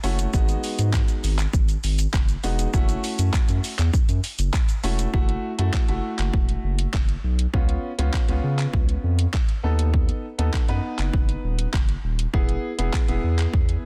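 A dense, heavily limited modern master with a dry, close sound opens this confident, driving dance-pop excerpt in a straight four-four feel. A deep, thick sub bass, saturated and sine-like with a fast attack and long sustain, sits up front and pumps against the beat throughout. The electronic pop drum kit is equally forward, layering a punchy kick, metallic hi-hats, handclaps and shaker into a produced, polished groove. Set lower in the mix, a warm concert grand piano with a smooth, vintage tone, rich low end and short sustain carries the accompaniment in the middle register, also pumping with the rhythm. The harmony moves from G#m7 to F#m7, and a new passage begins at 5.1 seconds, stepping through C#7 and B7/D# before arriving on E.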